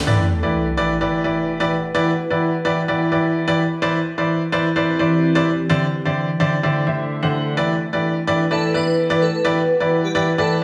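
A 128 BPM house groove in 4/4 with a light swing on the sixteenths sets a bittersweet yet energetic mood in E minor. A clear, worn grand piano sits up front playing a riff through dub echo over chords moving from Em7 through Cmaj9/E and D9sus4 back to Em7, while a deep, moody sawtooth pad with a slow attack and chorus hums in the background and an electronic sub drop lands as an impact at the opening. At 8.5 seconds an airy, dreamy lead with vibrato, portamento and dub echo carries a soft, sustained melody to the close of this cut from a longer piece, set inside a lush hall reverb.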